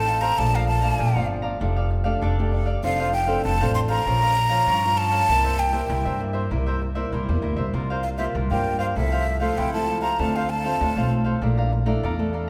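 A breathy, mellow concert flute carries the melody up front from the first moment of this lively, sunny samba excerpt in F major at 98 BPM. Its tongued, straight-toned line sounds close-miked and slightly unsteady before it drops out at 11.1 s. Beneath it, a crisp picked cavaquinho and a small, fingerpicked nylon-string guitar supply the accompaniment over a woody, thumpy pizzicato upright bass on gut strings, with the harmony moving from Bbmaj7 through Bbm and C7 to settle on Bbmaj7#11, all set in the wet reverb of a recital hall.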